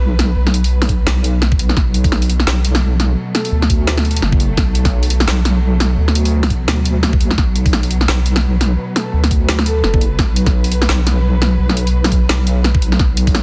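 Dark, bowed symphonic strings with vibrato hold sustained chords under a sidechain pump, while a deep, up-front wobble bass with chorus and tube saturation sits beneath them from the start of this tense half-time drum and bass excerpt at 171 BPM in B minor, soon joined by an overdriven kit with a woody snare and bright hats and a knocking electronic kick, as a breathy, flute-like synth lead with lush chorus and dub echo drifts in the background on A4 at 3.3 and 9.0 seconds, inside a dense, heavily limited mix with digital ambience.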